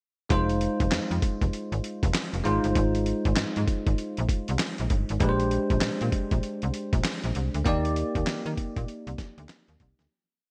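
From 0.3 seconds, a confident, bouncy new jack swing piece in F dorian at 98 BPM kicks off with a gritty, overdriven sampler-style drum kit playing a hard-swung beat (thumpy kick, fat snare layered with handclaps, hi-hat, gated reverb), a snappy FM bass with a metallic attack working a swung synth-funk line with muted ghost notes, and a bell-like tine electric piano holding drop2 chords with grace notes through a lush chorus over Fm7, Ab6, Bb13 and Ebmaj7, all in a bright 1980s-style digital production with light ambience before fading out from 7.7 seconds.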